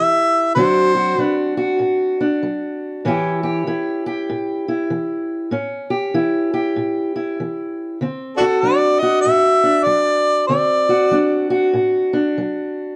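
A dark studio sound with a moderate room reverb frames this rollicking, swaggering acoustic country blues, cut from a longer piece and moving at a swung 97 BPM in 4/4 over A7 and D7 chords. A boxy parlour steel-string guitar, fingerpicked and up front, carries the accompaniment for the full 13 seconds. Above it, a mellow harmonica with plate reverb plays jazz-style lines full of light vibrato, tongue slaps and scooped notes, appearing briefly at the start and returning around 8.4 seconds.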